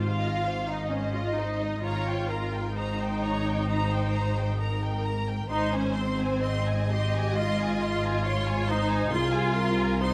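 Close, detailed microphones and a light reverb give this classical passage for string orchestra an intimate, clear sound. It is a slow romantic movement in 4/4 with a flexible, rubato feel, and its mood is serene and tender. A focused violin section carries the melody, while a second violin section with a soft attack adds an expressive line beneath it, both bowed with lush vibrato. The violas supply smooth, even accompaniment up front in the blend, and the cellos and double basses provide a rich bowed bass, with the cellos set further back. All five sections play across the full 10.1 seconds, which are cut from a longer piece, while the harmony passes through a handful of chord changes.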